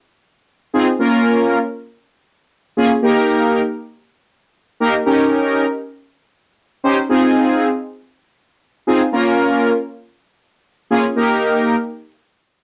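A fat, brassy analog synth brass with a warbling chorus plays alone up front from 0.7 to 11.8 seconds, carrying an upbeat, nostalgic pop excerpt at 118 BPM in Eb mixolydian over Ab6, Bbm, Eb and Eb7 chords, its vintage cassette home recording bathed in a short, wet studio ambience.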